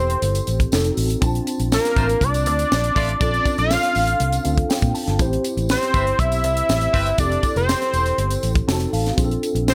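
A fat, detuned analog synth lead fronts this polished 1980s jazz-funk pop excerpt, carrying the melody up front with chorus, a sub-octave weight and a filter sweep over a mellow tine electric piano, a round, foam-muted fingered bass and a tight funk drum kit. The mood is urban and bittersweet, set in a straight 4/4 with the kit's high-tuned snare and tight kick sounding dry and acoustic, while a jingly tambourine sits close in the background from 0.3 seconds. The electric piano, clean and direct under an ensemble chorus, moves through lush harmonies such as Fmaj9, F7b9, Bbmaj9 and Am9, and adds short fills around 4.2 and 8.4 seconds. A clear, tight horn section with light vibrato plays a second line from 2.0 to 7.1 seconds, lending a vintage pop-style sheen. The dark, amped bass sits up front, and a light studio reverb gives the whole mix a glossy, compact space.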